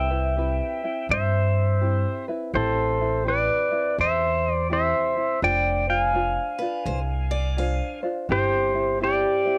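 Hawaiian tune at a relaxed, languid 83 BPM in swung 4/4 and C major, cut from a longer piece and moving through Cmaj7, Am9, Fm6 and C/G. An up-front, twangy electric pedal steel carries the melody with fingerpicks, slide and volume swells, over a bright, thumb-plucked tenor ukulele and a growly pizzicato upright bass with steel strings, also up front. From 6.6 to 8.1 seconds a boxy parlour acoustic guitar with old strings adds a picked second line, while the steel, ukulele and acoustic guitar carry a cassette-tape tint in this dry home recording with little reverb.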